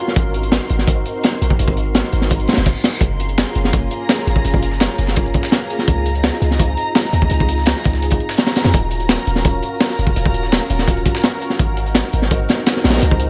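An echo-heavy mix with light reverb and a small-room feel frames this nostalgic, atmospheric drum and bass and jungle excerpt at 168 BPM, where a crunchy, gritty breakbeat kit with a high-tuned snare and tight kick sits up front over a deep, boomy 808-style bass with tube saturation. A silky string machine with ensemble chorus and vintage sampler grit holds sustained chords through Ab9, Gbmaj9, Dbmaj7 and Ebm7, while a reversed, dreamy, detuned swelling texture floats bright and high above. A very quiet reverse cymbal appears at 2.5 seconds, and from 3.0 seconds a compressed, dusty soul sampler-style kit of filtered hi-hat and snare with analog delay joins in the background.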